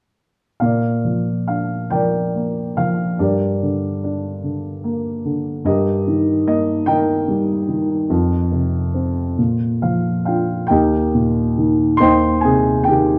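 A dark, mellow grand piano enters alone at 0.6 s, playing a tender, peaceful classical passage in 6/8 with free, rubato timing, its short-sustained tone placed up front within a moderate recital-hall reverb. The harmonies move from Bb through Gm and Eb/G to F5 before a brief piano fill from 9.4 s leads into a new section at 10.7 s on Eb and Cm/Eb, where this fragment of a longer piece ends.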